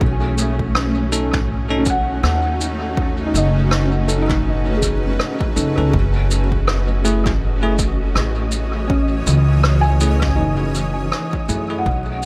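Lightly reverberant and hazy, this meditative ambient dub fragment at 81 BPM in F# dorian sets a blurred, detuned granular cloud pad and the soft, intimate arpeggios of a felt-muted upright piano, with audible action noise and dub echo, over a woody, thumpy pizzicato upright bass up front, a punchy layered electronic kick and a vintage brush drum kit of rim click, shaker and toms, while a bell-like tine electric piano adds clean stabs from the background and a breathy, wind-like tuned noise texture drifts in at 6.6 seconds before the fade-out from 9.9 seconds.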